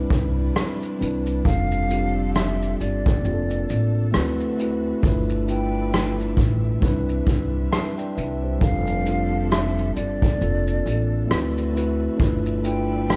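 A swung 67 BPM brush-kit groove with a punchy kick, hi-hat, rim click and shaker, the kick dropping out from 3.2 to 5.0 seconds, drives this nostalgic, cosy lo-fi hip hop cut in C major, where a woody, growly pizzicato upright bass and a mellow tine electric piano with cassette-tape colour sit up front, a lush bowed string section hums in the background, and a breathy jazz flute with vibrato enters at 1.5 seconds over a dark small-room ambience laced with vinyl crackle.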